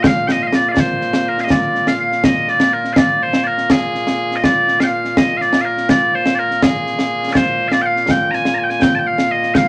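A small, wet room reverb surrounds this brief fragment of stirring, ceremonial Scottish pipe music in 6/8 at 82 BPM, set in Bb mixolydian. Loud, bright bagpipes carry the continuous, piercing melody up front, while close, dry concert snare and bass drums sit just as near. A short opening passage gives way to a new section at 1.5 s that runs to the end.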